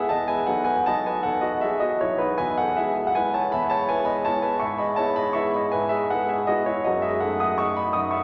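A concert grand piano plays alone, up front and intimate, with deep bass, long sustain and the clatter of its action audible beneath the notes, in a graceful, elegant classical waltz that moves in three with a loose, rubato lilt. The brief fragment, cut from a longer piece, drifts through B7 over E, then E over G#, and arrives on a diminished chord near 6.9 seconds. A cathedral reverb lingers around the polished tone, its top end rolled off above about 7.6 kHz.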